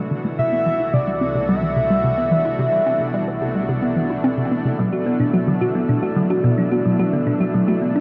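Bathed in a huge, wet reverb and the wobble of worn cassette tape with drifting pitch, this short cut from a longer piece of ambient, sequencer-driven space music feels cosmic and hypnotic. A lush, thick pad of detuned unison chords with chorus sits beneath a very quiet, breathy tuned-noise texture that sounds like distant wind. Up front, a hollow, bouncy square-wave pluck with chorus and delay plays a riff through the whole passage. From 0.4 to 4.2 seconds a shimmering, retro pulse-width lead carries a short high melody, roughened by vintage 12-bit sampler grit and set with vibrato, chorus and delay. As the harmony moves from C to Bm7, a round, tine-like synth pluck resembling a thumb piano enters at 4.8 seconds with arpeggios, and a filter sweep shapes the synth arpeggio sound across the entire passage.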